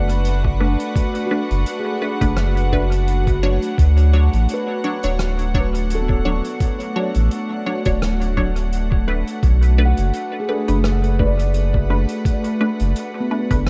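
A deep, round sub bass sits up front in this hazy, spacious ambient dub fragment at 85 BPM in B dorian, moving under bowed, floating strings that hold soft sustained chords from Bm7 to Dmaj7 and back to Bm7 at 9.4 seconds. Resonant, detuned chord stabs with a phaser and dub echo pluck alongside a handpan whose mellow, ringing arpeggios drift in the background through their own echo, while a very quiet bubbling filter texture shimmers above. A muffled, thumpy electronic kick enters at 0.4 seconds beside soft-mallet hi-hat and rim clicks carrying dub echo, all set in a dark small-room production with a lightly swung 16th-note feel.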